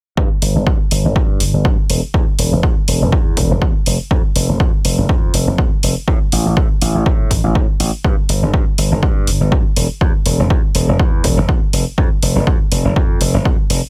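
Set at 122 BPM in 4/4 with a light 53% swing on the sixteenths, this joyful, funky slice of filtered disco house, cut from a longer piece and tuned to A4 = 439 Hz, rides on a bright, direct slap bass that runs from E1 to A2 and carries a filter sweep from 0.2 to 13.9 seconds, along with low-pass filtering and sidechain pumping. A punchy analog electronic kick sits up front with a small-room character, while a layered, overdriven electronic hi-hat, entering at 0.4 seconds, has a large-room sheen and its own sidechain pumping. The mix is dry and close, with the bass and kick forward and the hats tucked behind them.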